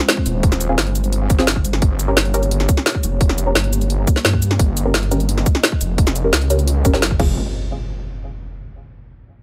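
A dry, close, up-front mix opens this short cut from a longer dark technical drum and bass piece, a mechanical, futuristic passage in straight 4/4. A snarling saw bass growls through detuned unison layers with a resonant moving notch and a filter sweep, heavily distorted and compressed, with sidechain pumping. The overdriven electronic kick hits tight, while the layered kit adds a woody snare, bright hi-hats, cabasa and crash cymbal. In the background, a moody analog pad holds sustained chords with a slow attack, sub octave and chorus, plus its own sidechain pumping. A muted, nasal dub chord stab with a wave-folded edge and a plucky filter envelope enters at 0.7 seconds, carrying subtle chorus, delay and its own filter sweep over chords moving between Fm and Gdim. At 7.2 seconds an electronic impact lands as the groove drops away.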